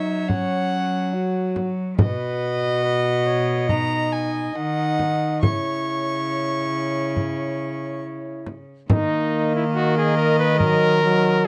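A rustic, solemn renaissance-style consort dance at a steady 70 BPM opens with a clear, softly attacked cornet carrying the melody above a reedy, gut-string violin second line, a close-miked trombone accompaniment and a bowed cello bass sitting up front, with a frame drum joining at 0.3 s. The cornet and violin both carry light vibrato, while the frame drum sounds dry and close, struck with hard hands. The intimate, detailed recording moves through F#5, B, C#m and D#m chords before this fragment of a longer piece breaks off.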